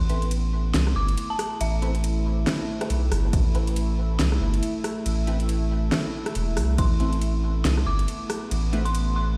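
A swung half-time pulse at 139 BPM drives this cavernous, heavy deep dubstep fragment in A minor. A thick, saturated sub bass sits up front beneath a moody ambient pad carrying chorus, reverb and vintage 12-bit grit. Muted sawtooth dub chord stabs, soaked in phaser and dub echo, sit in the background, while an overdriven deep house kit lays down fat snare, metallic hats, rim clicks and crash. A punchy electronic kick is heard only briefly at 3.3 and 6.8 seconds, and an eerie, inharmonic FM bell melody with chorus and dub echo sounds at the start and returns at 6.8 seconds, the mix ringing through a bare stone room.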